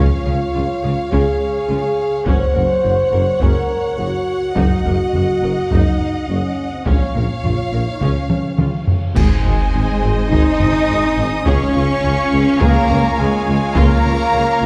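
An epic orchestral film score cut from a longer piece, this passage feels majestic and adventurous, moving at a steady, straight pulse in four. Two lush, bowed violin lines carry the melody and a second line above it, the upper one more distant, while clear violas and cellos sit in the background with vibrato and a focused tone. The mellow French horn section holds sustained chords prominently, and the bass is anchored by a solo tuba and a smooth, even double bass section far back in the hall. A compressed, saturated taiko ensemble struck with heavy sticks drives the music from 1.1 seconds, joined briefly by a bright cymbal swell, clash cymbals and concert bass drum, before a drum fill leads into a full band accent at 9.2 seconds. There the music shifts to a new key, and a distant trumpet section adds stabs while a very quiet, hollow pipe organ on flute stops holds soft chords. The whole sits in a reverberant concert hall with a dark production.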